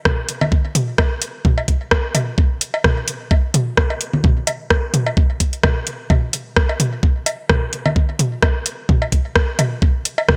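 Techno at 129 BPM in 4/4 with a light 16th-note swing, this cool, sparse fragment of a longer piece pairs an overdriven, knocking electronic kick with a garage drum kit of metallic hi-hats and rim clicks that also carries overdrive, while electronic toms, cowbell and congas sit up front through a digital delay, all framed by light reverb and a bright 1980s-style digital production.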